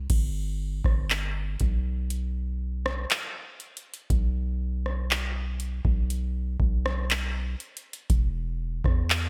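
A bright, dry digital production in a 1980s style frames this short contemporary R&B excerpt, whose mood is sensual and full of longing. A deep, mellow 808-style bass opens at 0.0 seconds with long, sine-like tones that strike quickly and decay, sitting up front. From 0.1 seconds, a booming analog drum machine, re-recorded in a large room and also placed up front, adds a deep kick, metallic hi-hats, handclaps, rim clicks and a crash cymbal.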